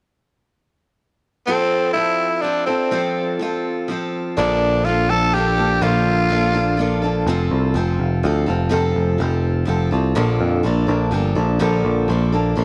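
A light reverb gives this short folk rock and heartland rock passage an airy sense of space, with an open-road, nostalgic mood and a straight 124 BPM pulse in 3/4, tuned slightly under standard pitch at A4 = 439 Hz. A picked steel-string acoustic guitar with a warm, auditorium-sized tone and a growling tenor saxophone enter together at 1.5 seconds, both up front. The sax carries the melody in a raspy, breathy pop style with light vibrato and a touch of tape echo, sounding punchy and gritty until it drops out at 7.0 seconds. A picked electric bass joins at 4.4 seconds with a bright, direct bite, holding the low end beneath the guitar's accompaniment. The harmony simply alternates between F and Bbmaj7 across two sections, leaving guitar and bass to carry the second half on their own.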